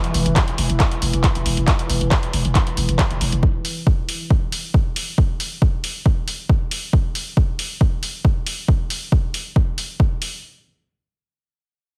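A punchy analog drum machine's handclaps and pumping hi-hats open this intense, hypnotic stretch of 137 BPM peak-time techno cut from a longer piece, alongside a deep, moody, detuned pad drone with chorus that ends at 3.5 seconds and a growling, buzzy 808-style bass on a low E that drops out at 3.4 seconds. A punchy analog kick drum joins up front at 0.4 seconds to drive it, all heavily compressed into a dry, radio-like sound.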